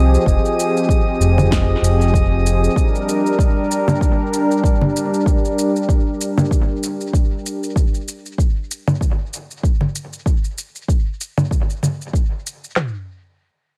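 Organic downtempo at 96 BPM with a lightly swung, hypnotic feel, this excerpt opens on a detuned, warbling vintage pad moving from Fm7 to Gm, a dark gliding synth bass and a calm glassy sine texture of drifting overtones, all breathing with sidechain pumping or chorus. The bass and glass texture fall away by 2.8 seconds and the pad by 7.7 seconds, leaving two drum layers: an up-front kit of deep kick, woody snare, handclaps and toms, and an overdriven layer of electronic shaker, congas and punchy snare trailing dub echo. The mix is echo-heavy, wrapped in light reverb and digital ambience.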